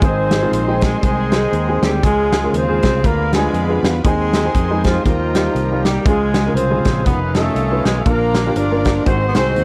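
Soulful and reverent, this uptempo gospel passage in Ab major moves at 119 BPM in 4/4 with a swung eighth-note feel, running about 9.6 seconds as a cut from a longer piece. A breathy, close-miked tenor saxophone carries the melody with scooped notes and a soft attack, joined by a mellow, vintage-toned horn section playing in a jazz style with light vibrato. Underneath, an upright piano with a woody, natural sound and long sustain accompanies from the background, while a fingered electric bass gives a round, amped low end. The acoustic drum kit has a punchy kick and medium-tuned snare with hi-hat, sounding roomy yet up front. A lush, bowed string section holds intense, bright chords in the background, and a very quiet, lightly overdriven tonewheel organ adds sustained chords with key click, chorus vibrato and rotary speaker, all set in light reverb over a progression that turns from Ab through Ddim7 and F7alt to Ab7.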